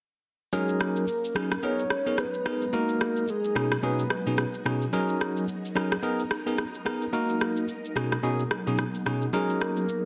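Afrobeats with a breezy, sunny mood and a lilting swung feel, opening on a bell-like tine electric piano that is bright and up front, alongside a produced, tape-warm electronic shaker and rim click with soft clipping on the snare. A soft, round octave-layered synth lead with vibrato, chorus, phaser and digital delay carries the melody from 0.5 to 4.6 seconds and returns briefly at 9.3, while an ethereal, airy pad with slow attack and a long release sits mellow in the background. The sound is dense and heavily limited, set in a light digital ambience, and the passage is cut from a longer piece.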